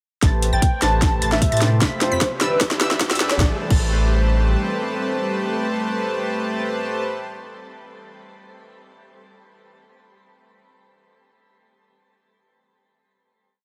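A half-time 4/4 beat at 151 BPM drives this lush, dreamy future bass piece in A minor: a hard-clipped electronic kick and a trap kit with a sharp snare, metallic hi-hat rolls and crash sit up front beside a deep, saturated sub bass locked to the chord rhythm. During the build, a smooth, detuned supersaw plays dotted-rhythm chords through a sweeping low-pass filter. Meanwhile, a bright, punchy pluck arpeggiates high in the background with tape echo, an airy lead with chorus and vibrato adds short answering phrases, a very quiet riser marks the transition, and an ethereal slow-attack pad enters at 1.5 seconds. The drums stop at 3.8 seconds, leaving the synths to ring out on a final Am7 chord under light reverb.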